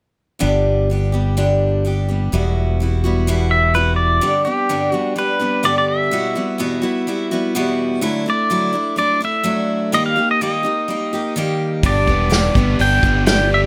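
A clean pedal steel guitar carries the melody from 3.5 seconds, its fingerpicked slide lines and volume swells sitting up front with a warm, compressed tone. This folk rock and heartland rock excerpt moves at 126 BPM in a straight 4/4 in G major, with a hopeful, open-road mood. A bright, full-bodied dreadnought acoustic guitar is picked throughout as accompaniment, while a direct, fingered electric bass plays at the start, then returns near the end. The harmony moves between G and Emadd9, then on through Dadd9 and a striking Eb before landing back on G. At 11.8 seconds a biting, double-tracked overdriven guitar riff enters with spring reverb, joined by a distant, roomy acoustic drum kit played with bundle sticks, its tight kick, medium-tuned snare and hi-hat lifting the final bars under a light reverb.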